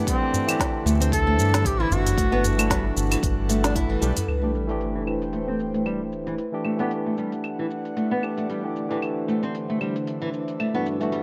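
Light reverb gives this meditative organic downtempo excerpt, in A dorian at 114 BPM with a gentle 16th-note swing, a soft sense of space. A bright, barky electric piano through a combo amp and an airy, breathy pad, both pumping, sit alongside a small fingerpicked nylon-string guitar on chords such as D7sus4, Gmaj7, Am9 and Em7, while a clear, distant duduk sings a folk-style melody with light vibrato and scooped notes until 3.0 seconds. A deep electronic kick, a compressed udu and a round, dark analog bass up front fill the opening moments beside an overdriven kit of woody snare, smooth hats, claves and shaker that runs throughout, and at 4.3 seconds a sub drop impact marks a new section as a filter sweep moves over the guitar.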